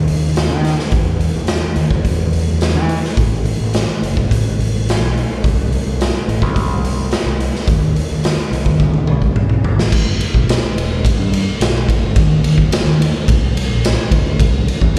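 An overdriven, growling fingered electric bass opens this angsty, brooding quiet-loud alternative rock excerpt, with a raw garage drum kit joining at 0.1 s in a straight 4/4 at 107 BPM, tuned to A4 = 436 Hz. The bass sits low and punchy, ranging from E1 to E3 with a bright, amped edge. Up front, the saturated, gritty drums have a punchy kick, a medium-tuned snare and a rolled-off top, their sound pumping in a stone room across crash, ride, hi-hat and toms. A drum fill from 8.8 s carries the music into a new section at 9.9 s, which runs to the end. The whole performance is heard as a live gig through the venue's PA, with light reverb giving it the feel of a recital hall.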